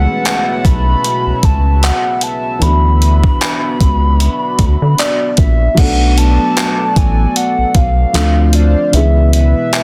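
A hollow, woody synth lead carries the melody from the first moment, treated with chorus, phaser and digital delay. Beneath it sit a soft, felt-muted upright piano, a shimmering pulse-width pad that pumps against a sidechain, and a rubbery square-wave bass that sits up front. This is a late-night, moody slice of contemporary R&B in B dorian, moving at an unhurried 76 BPM with a light swing on the sixteenths. At 0.3 seconds a gated 80s digital drum machine enters, its overdriven, thumpy kick, handclaps, hi-hat and crash cymbal pushed forward and carrying a gated reverb. The harmony drifts from F#m11 to D69, then shifts at 5.8 seconds into a second section that moves through Bm7, Dm7 and C#m7. The bass drops out at 9.5 seconds while the other parts carry on, and the whole is dry, dense and heavily limited in a modern master.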